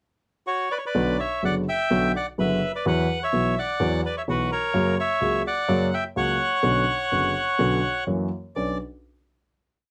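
A reedy, airy bandoneon carries a tense, melancholic tango melody in B harmonic minor at 126 BPM, its motif-based period phrases partly doubled in thirds and played with a rubato feel, while a deep, polished concert grand piano enters at 0.9 seconds with short-sustained marcato chords in four, both up front in light reverb through a brief piece that closes on a final chord from 8.6 seconds.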